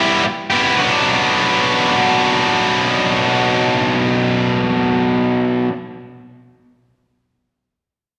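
Rock in free time and B minor, this brooding, cathartic fragment cut from a longer piece features a lone tight, bright, double-tracked electric guitar, picked and distorted up front from B2 to G4, moving from Em/G to Bm and blooming into a wet recital hall reverb over its 5.7 seconds.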